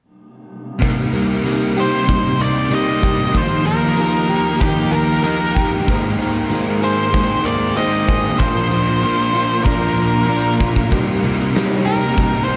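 Shoegaze-leaning dream pop rock in C minor at 95 BPM, this melancholic, brooding cut drifts through Cm7, Ebadd9, Abadd9 and Bb, as a fat-snared arena drum kit, a thick fuzz guitar riff with ensemble chorus, a mellow, up-front clean electric riff steeped in reverse reverb, and a woody, shimmering twelve-string acoustic arpeggio tucked behind lush chorus and delay all begin at 0.8 seconds, before a dark octave-fuzz lead melody with delay arrives at 1.8 seconds, everything bathed in a vast, dreamy reverb.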